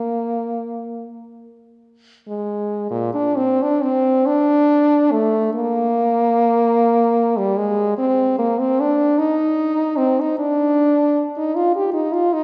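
A clear, present French horn plays alone and up front throughout this short classical excerpt, its light vibrato lending a serene, nostalgic tone to a free, rubato line in a lilting six-eight feel. The horn ranges from Bb2 up to G4, and its opening phrase returns at 2.9 seconds. The playing is heard from further back in a concert hall, whose lush reverb gives each note a long, glowing tail.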